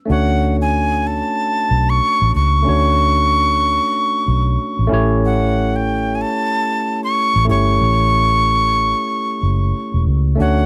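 Cinematic and silky, this short fragment of lush 1970s-style soul moves at an unhurried pace with a gentle sixteenth-note swing. A breathy, bright jazz flute carries the melody in its upper register, its straight tone and crisp, chiffy attack adding a reedy edge. Beneath it, a barky tine electric piano plays clean accompaniment through a combo amp, while a vintage fingered electric bass, foam-muted and round, anchors the low end with a dark, amped tone. All three parts play together from 0.1 to 10.7 seconds, sitting up front in a dry mix with little reverb. The harmony shifts from Dmaj7 to A7 at 4.9 seconds, and the passage is cut from a longer piece.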